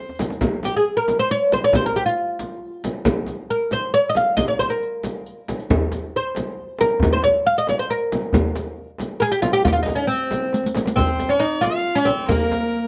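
Persian modal ensemble music in a straight 6/8, hypnotic and full of longing, cut from a longer piece. A woody, fretless oud with double strings carries the melody up front, underpinned by a deep, large frame drum played with hard hands and a close, dry riq with bright jingles, while a warm tombak returns at 5.7 seconds. After a drum fill, a nasal, airy-bowed violin with light vibrato returns as a second line at 11.0 seconds as the music moves into a new section, the ensemble set in light reverb.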